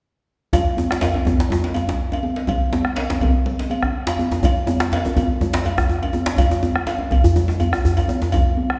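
A straight 4/4 pulse at 123 BPM drives this short, powerful cut from a longer West African traditional drum ensemble piece, with the whole group sounding from 0.5 seconds until close to 8.8 seconds. Two djembes carry the energy: one is up front, medium-tuned and buzzing with metal rattles in a live room, while the other sounds deep, compressed and saturated. High-tuned congas ring out close and dry under soft hands, and a metallic cowbell adds its small-room sound. Beneath them, a dark bombo sits close and dry in the background, giving the groove its low weight. The recording is set in a recital hall or church with a long, wet reverb of about 1.8 seconds, which lends the driving ensemble a spacious, resonant character.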